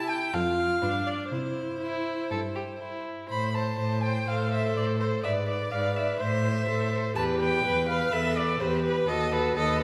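Two violins and a viola open this lively, graceful classical-period string quartet excerpt at 125 BPM, the first violin singing a smooth, vibrato-rich melody while the second violin traces a focused inner line and the close, clear viola accompanies, with the cello entering at 0.3 s on an even bass as the harmony moves from C major to A minor at 3.3 s, all set in the moderate reverb of a concert hall.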